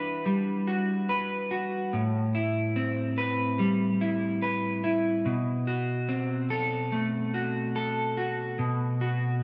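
A solo electric guitar, picked and slightly broken-up at the edge of break-up, sits up front from the start, its dark tone bathed in lush chorus and delay as it moves through Em9, Am9 and then B5 at 5.3 seconds. This melancholic, hazy dream pop fragment moves at a slow 72 BPM in a straight 4/4, cut from a longer piece. A wet scoring-stage reverb with a digital ambience gives the dark, warm production a spacious, misty glow.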